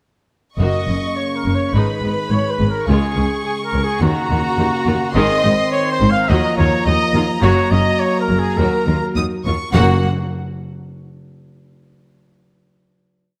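A triumphant, heroic film-score cue in F# major at 105 BPM opens at 0.6 s with a timpani stroke on F# under the full ensemble. A softly attacked violin section with light vibrato carries the melody over lush studio violins, a focused viola ostinato, dark, distant trombone chords and clear trumpet stabs, all in a moderate scoring-stage reverb. Rich cellos drive a bass ostinato doubled by smooth bowed double basses as the harmony moves through G#m, C# and D#madd9, and the timpani returns at 9.7 s for the final F# chord.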